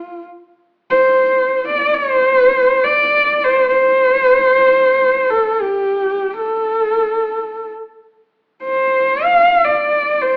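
Galloping and proud, this Mongolian traditional piece in free time features a single husky horsehead fiddle, bowed on horsehair strings and placed up front, singing expressively with vibrato and portamento from 0.0 to 10.4 s, set in a wet stone room with an AM radio character, cut from a longer performance.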